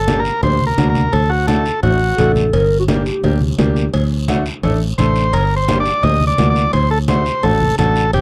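This is a dry, close recording in a 1970s studio style, with little reverb, cut from a longer passionate and danceable cumbia. A vintage, buzzy combo organ sits up front with the melody, while a dark, round, foam-muted fingered electric bass holds the low end throughout, alternating between G minor and D chords. A bright, woody upright piano accompanies intimately, its action noise audible. The percussion is layered: very quiet, low-tuned congas with soft hands sound distant in a large room, ringing cowbell and timbales stay in the background, and a raspy, saturated guiro scrapes beneath. At 2.2 seconds a breathy, whispered clarinet with subtone, vibrato and scooped notes steps in for a brief jazz-style line until 3.5 seconds, and the organ returns at 5.0 seconds to carry the melody to the cut.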